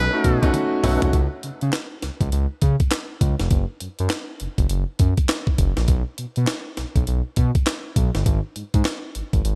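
Set in a digital ambience, this bouncy, confident new jack swing cut opens on a B9 chord at 101 BPM with a swung 16th feel. A buzzy, breathy trumpet with a metal mute plays a brief jazz-style melody over stabs from a lightly overdriven tonewheel organ with key click and slow rotary speaker in the background, both touched with digital delay. Meanwhile, an open baby grand piano sustains its accompaniment, and a drum fill runs from 0.5 to 1.1 seconds. Underneath it all, the smooth sawtooth-and-square synth bass with ring modulation plays from the very start, joined at 0.2 seconds by the gritty, pitched-up sampler-style breakbeat kit, with its thumpy kick, high-tuned snare, handclaps, hi-hat and toms; together they carry the groove up front until the cut ends at 9.6 seconds.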